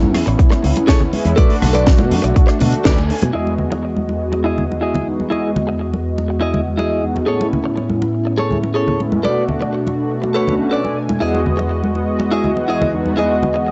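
A straight 122 BPM nu-disco groove in E major opens with a punchy, layered electronic kick, a tight funk kit with a high-tuned snare, rim click and hi-hat, and a bright, punchy envelope-filtered picked bass that all drop out after a band accent at 2.9 seconds, leaving soft-handed, close congas, a bright, clean, compressed direct guitar riff and round, detuned sawtooth synth brass with chorus, vibrato, sidechain pumping and tape echo to carry the sunny, groovy Amaj7–Bm7–Emaj7 changes through a cassette-dulled home recording with spring reverb in a small room.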